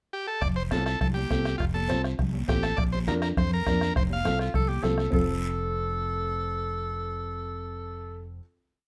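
Joyful and festive, this short cumbia at 204 BPM in F major opens with a buzzy vintage combo organ playing hook phrases up front, joined at 0.4 s by a round, dark fingered electric bass figure, a soft-beater bombo with rim, ringing high-tuned congas in the background and a raspy guiro, while a woody, slightly detuned upright piano plays rhythmic triad chords and a breathy, whispered tenor saxophone with light vibrato and scooped notes enters at 4.4 s with answering phrases in the melody's rests before the piece settles on a final chord at 5.1 s in light reverb.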